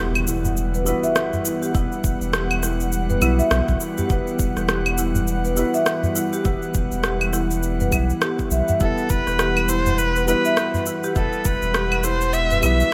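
Hypnotic and mystical, this organic downtempo excerpt in E minor moves at 102 BPM with a swung feel. A soft felt-muted upright piano with audible action noise and a breathy, detuned pad hold an Emadd9 chord under sidechain pumping and shimmer reverb, while a medium-mallet marimba spins delayed arpeggios and a round sine sub bass sits up front. Electronic claves, shaker and rim click join a small acoustic udu, a very quiet electronic impact ends at 1.7 seconds as a deep layered electronic kick enters, and at 8.8 seconds a clear, close bowed kamancheh takes the melody with vibrato and portamento, all set in a bright 1980s-style digital production with moderate plate reverb.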